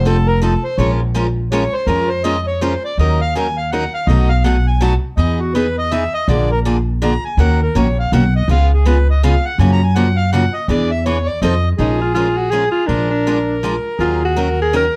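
A reedy accordion solo opens this fiery, swinging gypsy-jazz waltz in Eb minor at 164 BPM, backed by a woody, thumpy pizzicato upright bass and a bright, boxy picked parlour guitar, until a warm alto saxophone with subtone and vibrato takes the melody at 11.8 seconds, all heard through light reverb and the warbling pitch drift of worn cassette tape in this short cut from a longer piece.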